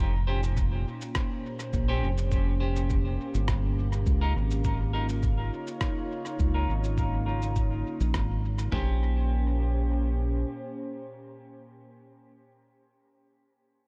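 A lightly swung 4/4 groove at 103 BPM sets this hazy, meditative ambient dub fragment in motion. It is carried by a muffled, pitched-down sampler-style drum kit with a thumpy kick and fat snare, re-recorded in a small room, alongside a compressed electronic cabasa and rim click soaked in dub echo. Up front sits a round, punchy fingered electric bass with tube saturation, the most prominent part, anchoring the Bb dorian harmony. A warbling, detuned tape-like pad of sawtooth and triangle tones holds nostalgic chords with chorus and its own reverb, moving from Bbm69 to Db69 and returning to Bbm69 at 8.7 seconds. Stabs from a clean, picked electric guitar, softened by a low-pass filter and sent into dub echo, float quietly beneath. The drums drop out near 8.9 seconds and the bass stops at 10.4 seconds, leaving the pad and guitar to trail on within a digital ambience.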